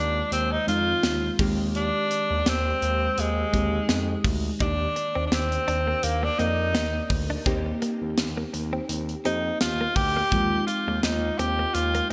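A bright, forceful tenor saxophone carries the melody up front with vibrato and digital delay, lending this slice of 1980s-style pop a nostalgic, romantic glow over a lightly swung sixteenth-note feel. Glassy digital keys with chorus and an evolving filter sweep fill out the harmony, while a smooth, gliding sawtooth synth bass and a polished studio kit, with punchy kick, high-tuned snare and gated reverb, anchor the groove. At 4.6 s a clean, direct-recorded electric guitar joins quietly in the background, its picked riff shimmering through chorus and delay, all set in a plate-reverb sheen of crisp digital production.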